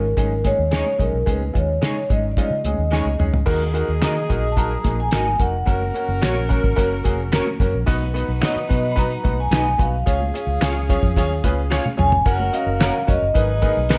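The cloth-damped, thuddy drum kit sits up front with a fat snare and tight kick, driving this joyful, danceable 1960s-style soul cut at 109 BPM in F# major, where a soft-mallet vibraphone with slow motor vibrato carries the melody over clear baby grand piano, a round, foam-muted vintage bass, slightly broken-up guitar stabs with ensemble chorus, very quiet high-tuned congas, a mellow saxophone section entering at 3.5 seconds and finger snaps joining at 4.0 seconds, all in light reverb.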